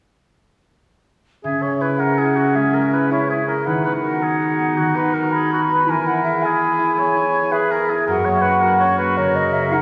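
Cinematic orchestral music in 12/8 at 108 BPM, this heroic, triumphant build-up is cut from a longer piece and moves through C#m, B/D#, E and F# between 1.4 and 9.8 seconds. A silvery concert flute with pure tone, vibrato and a crisp attack, an up-front oboe with a smooth top and light vibrato, and a bright clarinet in classical style share the second line. Beneath them a ringing, fingerpicked concert harp plays arpeggios, all heard through a wet scoring-stage reverb.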